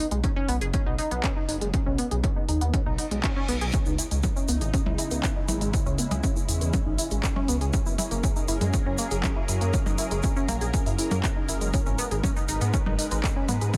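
A digital ambience frames this dramatic, driving melodic techno cut in C# dorian at 120 BPM, where a punchy, up-front electronic kick and a tape-warm techno kit of handclaps, smooth hi-hats and percussion blips anchor a deep, rumbling detuned saw bass that pumps with the sidechain. A tight sequenced synth spins filter-plucked sawtooth arpeggios through chorus and dub echo, while a reverse cymbal at 3.0 seconds ushers in a grainy, vintage egg shaker at 3.7 seconds. From 4.2 seconds a lush, thick unison pad with sub octave, phaser and slow attack carries sustained chords over the progression from C#m through F# to G#m.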